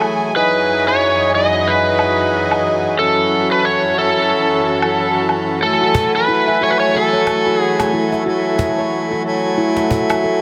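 Organic downtempo at 91 BPM in F# dorian, warm and hypnotic, where a reedy, breathing pedal harmonium with tape echo provides accompaniment and a dark, woody bowed string section holds sustained chords over a filtered woodblock, while a bright overdriven slide guitar carries the delayed melody up front from 0.4 to 7.9 seconds, and a ringing stainless-steel handpan and a snappy cajon join near 5.8 seconds, all set in a lush hall.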